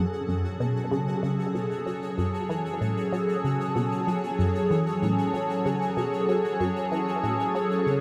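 A swirling, nasal phased analog pad holds an F#madd9 chord up front, joined from the start by a squelchy, resonant blip pluck riff colored by cassette tape and tape echo and by a faint, bright pulsing gated texture under chorus and shimmer reverb, the whole mysterious, expansive ambient excerpt set in a vast, echoing space.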